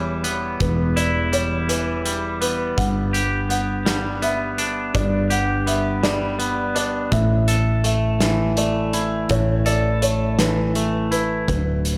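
A lush hall reverb gives this slow post-rock passage, cut from a longer piece, a big arena sound and a soaring, hopeful mood at 55 BPM in 6/8, moving from Em to G to Asus2. A twangy, clean electric guitar sits up front with fingered arpeggios and slapback echo, alongside a felt-muted upright piano whose mellow, intimate arpeggios also carry slapback echo, while a growly, round fretless bass holds the low end. A loose indie drum kit enters at 0.2 s with a punchy kick, medium-tuned snare and hi-hat, its pumping room tone rolled off at the top.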